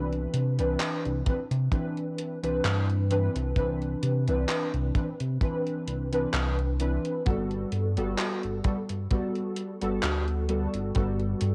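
A tight, up-front acoustic kick enters at 1.3 s beneath a dark, glossy chorused synth bass with tube saturation and mellow, detuned lo-fi synth keys carrying vintage sampler grit and analog delay, while an overdriven, gated 80s drum machine ticks out handclaps and hi-hat in this dreamy, woozy vaporwave excerpt of a longer piece, drifting from Cmaj9 to Gmaj9 at 7.3 s on a lightly swung groove through the pitch wobble of worn cassette tape.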